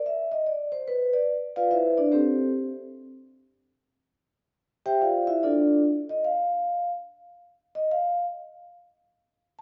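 A wet, roomy reverb from a large studio surrounds this short jazz excerpt, which sounds like a band playing live in one room, with the top end rolled off above 7.5 kHz. At 145 BPM in 4/4 with a relaxed swing on the eighth notes, the mood is easy and warm. The only part heard is a vibraphone played with soft mallets and its motor off, sitting up front and soloing throughout from 0.0 to 9.6 seconds. Its tone is mellow, dark and smooth, yet still metallic and ringing, moving between C4 and G5. The harmony passes through Dm13 and Am9, breaks off at 3.3 seconds, then settles onto C and F6 before breaking off once more.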